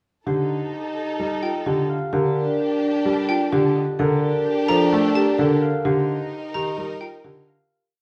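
Propulsive and hypnotic, this brief minimalist classical pattern piece in F mixolydian moves at 129 BPM in a straight 4/4, with a ringing, fingerpicked concert harp carrying the melody above repeated short cells from a deep, up-front grand piano, mellow padauk-bar marimba arpeggios played with soft mallets, and dry, band-limited xylophone arpeggios entering at 1.4 s, while a smooth-topped French horn and a lush, vibrato-laden violin section add swelling held notes, the ensemble heard from further back in a large reverberant studio as the chords pass through F9, a rootless Ebmaj9#11 and Bb6 before settling on Cm9 as the piece fades out from 5.8 s.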